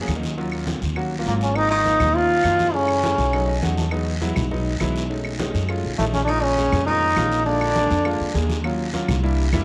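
A driving 203 BPM pulse in 4/4 carries this sophisticated Afro-Cuban jazz passage in Eb minor, where a growly, woody upright bass and a warm baby grand piano, which slips in a fill at 3.3 seconds, ride beneath raspy guiro, dry clave clicks and very quiet congas, while a punchy, forceful trombone with slapback echo leads two phrases from 1.3 and 6.0 seconds over a scooping baritone saxophone second line, all in a moderate spring reverb.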